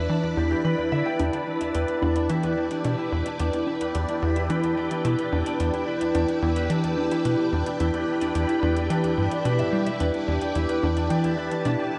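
Ambient, sequencer-driven space music with a hypnotic, expansive mood, cut from a longer piece and held on a single chord throughout. A lush, full-bodied string machine ensemble sits up front with slow-attack sustained chords, its sawtooth tone thickened by a sub octave, a moving notch and ensemble chorus for a mellow, vintage glow. Beside it, a tight, punchy sequencer bass drives a riff with a fast-attack filter pluck that decays, its sawtooth and square-wave voice coated in lush chorus and analog delay. A bright, ringing acoustic concert harp plays fingerpicked arpeggios through analog delay, while a bubbling stepped-filter texture of detuned, resonant sawtooth sits in the background, shifting in random filter steps with chorus and its own built-in reverb. From 1.2 s, dry, analog electronic hi-hats with a metallic edge and congas add quiet, delayed percussion in the background. The whole mix is bathed in a wet plate reverb and carries the worn, warbling pitch drift of old cassette tape.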